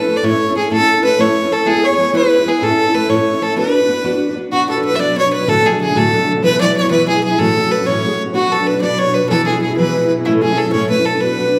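A clear, earthy fiddle carries the melody up front over a bright, full-bodied fingerpicked steel-string acoustic guitar, with a pure wooden baroque flute with vibrato adding a second line in the background, in this dark, lively and driving Celtic jig in 6/8 at 126 BPM, taken from a longer piece, before a lush, warm symphonic string section enters with a soft-attacked bowed drone at 4.5 seconds, all set in the wet reverb of a recital hall.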